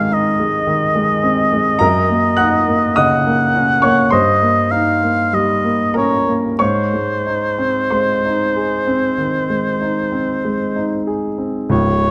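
Romantic classical duo in a lyrical mood, cut from a longer piece, with an unhurried rubato feel in 4/4. The oboe carries the melody up front in a classical style, its tone warm and touched with vibrato, while the concert grand piano accompanies with a clear, natural sound, deep bass and short sustain. Close, detailed microphones capture both instruments, set in a moderate scoring-stage reverb of 1.6 seconds.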